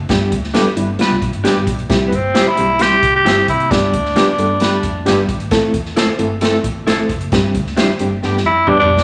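A dark, round electric bass opens this joyful, danceable slice of uptempo 1960s-style soul at 133 BPM in a straight 4/4. A reedy, worn electric piano with fast tremolo and a punchy, polished big-band drum kit join it at once, the kit sitting up front with an airy hall quality. Stabs from a slightly broken-up, lo-fi electric guitar follow, and a distant, roomy jazz-style horn section adds a second line. A raspy, breathy tenor saxophone carries the melody up front from 2.1 to 5.1 seconds, then returns at 8.5 seconds as a drum fill closes the passage. The harmony moves from G to C, back to G, then to A minor and a suspended G before resolving on G, all within a moderate large-studio reverb in a fragment cut from a longer piece.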